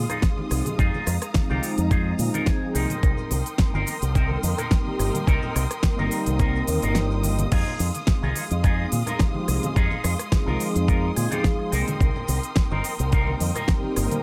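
Cosmic and sensual, this nu-disco excerpt, cut from a longer piece, moves in a swung 4/4 groove over a slow shift between Fm7 and Cm7. A gritty, thumpy electronic kick sits up front alongside a bright fingered electric bass run through an envelope filter, while a layered pop drum kit adds a fat snare, crisp hi-hats, rim clicks, cabasa and crash. Soft-handed congas and cabasa stay in the background, and a dark, clean picked electric guitar with its own envelope filter plays a riff softened by subtle chorus, a low-pass filter and dub echo, with clean guitar fills at 2.2 and 10.9 seconds. A smooth, detuned sawtooth analog pad with chorus and dub echo holds the accompaniment, and a lush, bowed symphonic string section sustains chords with expressive vibrato and sidechain pumping. The kick drops out briefly at 7.0 seconds, and the whole mix sits in light reverb.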